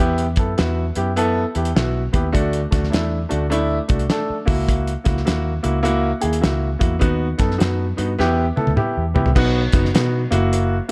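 Driving and urgent, this short excerpt of uptempo 1960s-style soul moves at 103 BPM in E minor with a swung feel. An up-front, woody upright piano with tube saturation carries the accompaniment over a round, foam-muted picked electric bass and a cloth-damped, thuddy drum kit with a fat snare, tight kick and dark cymbals, all set in a small room with light reverb and a dark production. A drum fill from 8.2 to 9.4 seconds leads into a new section that turns toward B and F#7.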